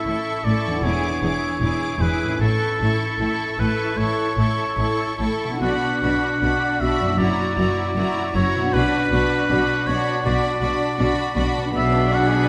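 Melancholic and solemn, this short classical passage cut from a longer piece unfolds with a rubato feel in 4/4, as a lush high violin section carries the melody while a bright, up-front solo oboe and a smooth, lighter-vibrato second violin section weave supporting lines. Beneath them, a clear viola section holds the accompaniment and a concert harp rings out thumb-plucked arpeggios, while focused cellos and even double basses anchor the bass from 0.1 seconds. The ensemble sits in a wet scoring-stage reverb as the harmony moves from A through E7 to B minor and F#7.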